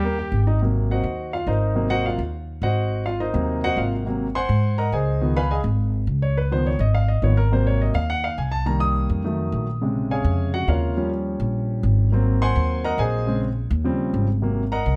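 A brisk, straight 4/4 groove at 208 BPM drives this lively, sunny Afro-Cuban jazz excerpt in Ab mixolydian, anchored by a woody, pizzicato upright bass sitting up front. A punchy trumpet with vibrato and plate reverb touches a single note before falling silent at 0.5 s, and from 0.6 s the concert grand piano takes a solo through to 15.0 s. The piano sounds intimate and natural, with deep bass, long sustain and audible action noise, as it moves through dominant ninth chords and a quick ii–V turnaround in a light reverb.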